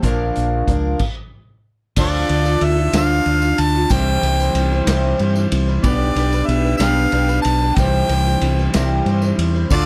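A slow, straight 6/8 pulse at 62 BPM carries this nostalgic, hopeful folk-rock and heartland-rock fragment in C major, with a vintage drum kit, punchy in the kick and dark in the cymbals, alongside a round, up-front fingered bass, a boxy, shimmering octave-doubled twelve-string acoustic, and a twangy, slightly broken-up electric guitar riff. After a brief stop, a clear, punchy harmonica takes the melody at 2.0 s, backed by a jingly tambourine in the background. A reedy accordion slips in with sustained chords at 9.7 s, all in a dry sound with little reverb.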